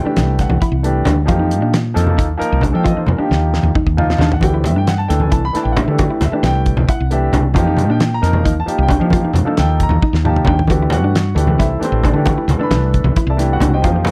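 Electric jazz fusion in a soaring, funky 7/8 at 268 BPM, this excerpt sets a present grand piano and a dark, round fretless bass up front over a damped 70s drum kit with a fat snare and tight kick, while low-tuned, ringing congas and clean, picked guitar stabs with subtle chorus sit in the background, the harmony moving between D9sus4 and F9sus4 with drum fills at 3.1 and 10.0 seconds, all in a small, lightly reverberant room.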